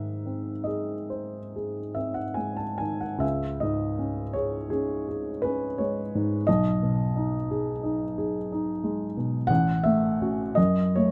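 A clear, natural grand piano sits up front in a light reverb, giving this short cut from a longer piece an intimate, close presence. It is a romantic classical nocturne for solo piano, melancholic and yearning in mood, moving in a lilting 9/8 at a slow 45 to 61 BPM counted in dotted quarters, with a flexible rubato feel. The single piano plays throughout the roughly 11-second span, ranging from A1 in the bass up to A5. The harmony drifts from G# to C#5 at 3.2 seconds, then settles through G#m/B and F#m/A before arriving on F#m at 10.6 seconds. The overall effect is a tender, searching fragment that feels suspended mid-thought.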